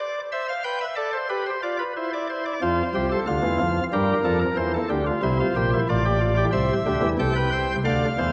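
Moving in a straight 3/4 at 92 BPM, this stately yet lively baroque-style three-part fugue in F major, cut from a longer piece, features a solo chamber organ on a nasal cornet stop with audible chiff and tremulant, placed up front and spanning A1 to G5, its harmony moving from Dm7 and G7 to an arrival on F at 2.6 seconds, bathed in a wet church reverb and colored by the warbling pitch drift of worn old cassette tape.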